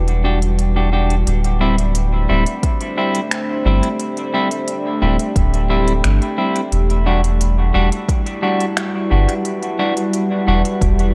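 Ambient dub at 88 BPM in a straight 4/4, this hazy, meditative passage is cut from a longer piece and moves from Em9 to D7sus4 and back to Em9. A deep, moody pad of detuned sawtooth unison with a sub octave holds sustained chords from G3 to D5, its slow attack and long release softened by chorus and its own reverb. Beneath it, a soft, round dub sub bass built from triangle and square waves sits up front between D1 and G1, given some tube saturation. An overdriven electronic kit supplies finger snaps and smooth hi-hats through dub echo, and an up-front, deep overdriven electronic kick arrives at 2.6 seconds, both kits re-recorded in a large room. A clean, fingered semi-hollow electric guitar plays stabs from G3 to G4, washed in spring reverb and dub echo until 10.6 seconds, all under a light reverb.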